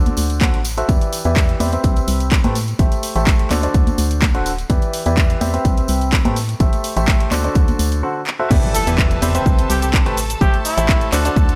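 Piano house at 126 BPM in E minor, bittersweet and soulful, driven by a bright grand piano riff with audible action noise, filtered and delayed, pumping over a hollow, organ-like FM bass and a punchy, overdriven electronic kick up front. A house kit of cabasa, crash, handclaps and bright hi-hats sits beside congas and tambourine played with soft hands in the background until a short break at 8.0 seconds and a drum fill. At the drop at 8.5 seconds an impact hits, a smooth violin section holds background chords, and a vintage, jazz-style trumpet with scooped notes and light vibrato plays a brief delayed melody, all in a small-room ambience.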